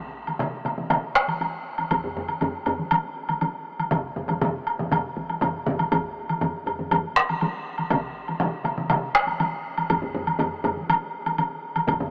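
This driving, powerful excerpt of Japanese traditional taiko drumming opens at 0.3 seconds with a taiko ensemble struck with heavy sticks in a small room, alongside an up-front woody woodblock and a second hard-stick ensemble, moving at 120 BPM in a straight 4/4. At 1.9 seconds a close, hard-stick solo taiko joins with a third ensemble whose vintage, band-limited tone sits up front. A huge ambient reverb washes over the whole performance, and the overall sound has a small-speaker character.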